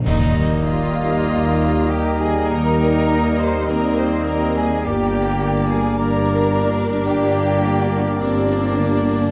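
In a free, rubato 4/4, this tender, serene passage from a slow romantic orchestral movement opens at 0.1 s with a band accent and dark clash cymbals with concert bass drum that fall away by 2.5 s, as a rich chamber violin section, clear clarinet, airy flute and smooth oboe carry second lines over mellow bassoon, ringing harp arpeggios, soft sustained French horn chords, distant trumpet stabs, and a bass of tuba and close chamber double basses, while a lush studio violin section sings the melody in the background from 0.7 s, joined by even studio violas and, from 2.5 s, studio cellos, all heard through close, detailed microphones with light reverb and vinyl crackle.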